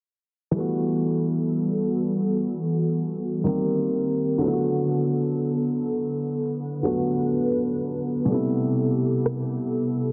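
Contemporary R&B at a slow 62 BPM in 4/4 with a straight feel, this short excerpt cut from a longer piece sets a moody, late-night tone. A grand piano carries the accompaniment from 0.5 seconds, intimate and up front, with audible action noise giving it a natural, close presence. A moment later at 0.6 seconds, a hollow, flute-like pad with a slow attack holds sustained chords, its mellow tone thickened by ensemble chorus. The harmony moves from Gmaj13 through Cm7 and Bm7 to Am9, while a filter sweep runs across the whole passage. A single tape-tinged electronic rim click appears briefly near 9.3 seconds, and a lush hall reverb and a dense, heavily limited modern master with a low-pass filter frame the sound.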